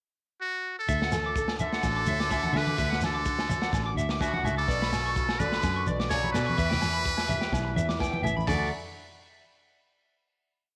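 A buzzy, metal-muted trumpet leads this sunny, danceable highlife guitar band piece with a motif-based, vibrato-laced melody from 0.4 seconds, over a twangy, slightly broken-up electric guitar spinning sixteenth-note pedal arpeggios through tape echo, a woody, boxy fingerpicked ladder-braced acoustic guitar, a round, foam-muted fingered bass playing a dotted figure, a gritty, saturated breakbeat kit, background shekere, agogo bells and low-tuned congas, and a muted trombone adding a scooped harmony line mostly in sixths, all in a small room before settling on a final chord at 8.5 seconds.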